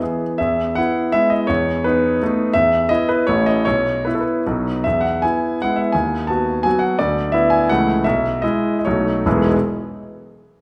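A clear, intimate grand piano plays alone, up front with audible action noise, in a rustic, proud romantic dance in 3/4 with dotted rhythms, E major, tuned to A4 = 443 Hz and moving with rubato between 135 and 185 BPM. Harmonies pass from E through B7/E, A and B/D# before the tempo slows from 6.5 to 9.3 seconds and settles on E via a B9 chord. A wet recital-hall reverb surrounds this brief fragment of a longer classical piece.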